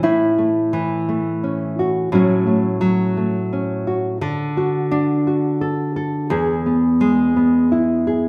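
A solo nylon-string guitar plays throughout this 8.3-second fragment of a longer folk work, set in A major at 86 BPM in a straight 3/4 lilt. Its tone is full-bodied and deep in the classical manner, thumb-plucked and placed up front, spanning E2 to A4. The harmony moves simply from A to F#m/A, then to D at 4.2 seconds and E at 6.3 seconds, giving the brief phrase a gentle, nostalgic sway. A wet recital hall reverb with a 1.4-second decay surrounds the guitar, lending the intimate performance a warm sense of space.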